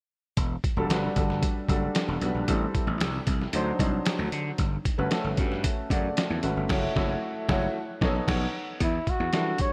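A bright, polished 1980s-style digital production sits in a lush hall, framing this bittersweet, urban slice of jazz-funk pop at 114 BPM, cut from a longer piece. A growly, overdriven slap bass and a muffled, pitched-down sampler-style drum kit with a thumpy kick and gated reverb enter at 0.4 seconds, joined at 0.8 seconds by a warm grand piano with deep bass and subtle chorus, moving through jazzy chords like Em11, Gmaj9#11 and B9 before a band accent from 6.7 seconds. At 8.8 seconds a mellow, breathy flugelhorn takes the melody with light vibrato and scooped notes.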